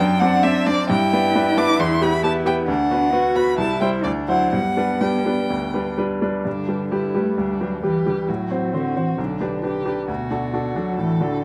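Violin, cello and baby grand piano begin together at 0.0 s in this graceful, spirited classical-period movement for piano trio in G major, taken at a quick 133 BPM with rubato: the rich violin sings the melody up front with vibrato and portamento above the dark, expressive bowed cello's second line, while the bright, brilliant piano accompanies with an intimate, polished tone, short sustain and audible action noise, the trio heard through close, detailed microphones in a moderate large-studio reverb, in a passage cut from a longer piece.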